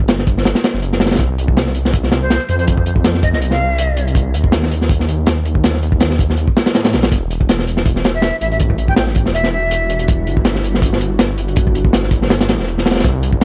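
Dry, gritty hardware recording with transformer saturation and a bed of vinyl crackle colors this dark, frenetic drum and bass excerpt in a jungle vein, with a slight swing on the sixteenths. A crunchy acoustic breakbeat kit sits up front, its tight kick, medium-tuned snare and hi-hat sounding small-roomed, smooth and saturated with a rolled-off top. Beneath it a thick, menacing detuned saw bass blends sawtooth with sine, its beating low end held long and placed up front throughout. A breathy, bright jazz flute with vibrato and a crisp, chiffy attack surfaces in short phrases at 2.2 seconds and again at 8.1 seconds, trailed by dub echo. From 8.0 seconds an ethereal, airy pad of detuned, chorused unison voices with a noise layer drifts in the background, slow to bloom, mellow and bathed in its own reverb, as the harmony moves through minor colors.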